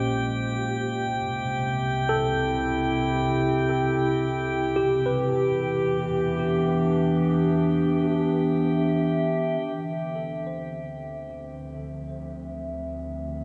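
Ambient and serene at 56 BPM, this reflective fragment of a longer piece sets a dark, warbling, lo-fi tape-like pad up front on sustained chords, while a worn, slightly out-of-tune tine electric piano arpeggiates through a combo amp in the background, a lush bowed double bass section with vibrato fades out over the first 9.6 seconds, and a glassy harmonics texture of drifting overtones stops at 9.6 seconds, all within a vast cathedral reverb as the chords move from Bbm7 through C and Em7 to Dm7.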